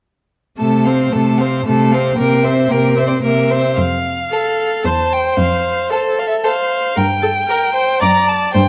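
Spirited and cheerful, this brief excerpt from a quick classical-period movement for string quartet moves in triple metre with a rubato feel, its harmony passing from F/C and C7 toward Gm and D/F#. A clear, up-front first violin carries the melody with smooth vibrato over a rich second violin line, a focused viola accompaniment and a warm, even cello bass, all four bowed by single players from 0.6 seconds. Close, detailed microphones catch each instrument, set in a moderate recital-hall reverb.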